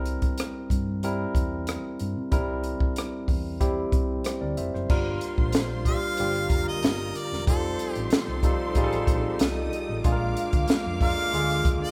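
A moderate studio room reverb gives this live-in-one-room band a smooth, cinematic glow, with a barky, lightly overdriven tine electric piano and a dry, compact cocktail kit with dark cymbals, a high-tuned snare and a punchy kick sitting up front in a lush 1970s-style soul groove at 93 BPM in 4/4. Underneath, a round, dark hollow-body short-scale bass holds the low end over chords moving from C7 to Gm7, F9 and Bb7. At 4.9 seconds a close violin section adds a second line with even vibrato while a rich, bowed string section sustains chords in the background, and at 5.9 seconds a bright, jazz-style harmonica takes the melody with soft attacks and scooped notes in this excerpt from a longer piece.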